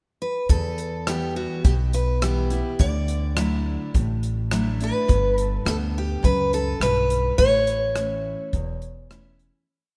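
Nostalgic and sunny, this short honky-tonk and classic country piece moves at 105 BPM in a straight 4/4. A bright jumbo acoustic guitar carries a motif-based melody in sentence-like phrases from a brief pickup. It is joined at 0.5 seconds by a dreadnought acoustic with old strings playing alternating bass and strum with bass runs, a growly, thumpy pizzicato upright bass playing two-beat root-and-fifth lines with walk-ups, and an airy drum kit with a punchy kick, hi-hat and rim click in a country two groove. The parts move through Em, Dadd9, G and A under a lush hall reverb in a rough home-demo mix, fading out from 7.4 seconds.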